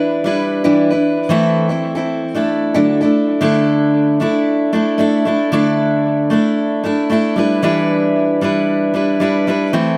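A picked steel-string acoustic guitar plays alone from 0.0 s in this heartfelt, easy-going pop excerpt at 114 BPM in a straight 4/4, its warm dreadnought body sitting up front with a touch of finger squeak and an analog delay on the notes. The chords move from Em7 through Am/E and Dadd9 before resting on a long Dsus2 from 3.4 s and returning to Em7 at 7.4 s. A moderate spring reverb and an echo-heavy mix give the guitar a lingering, spacious halo.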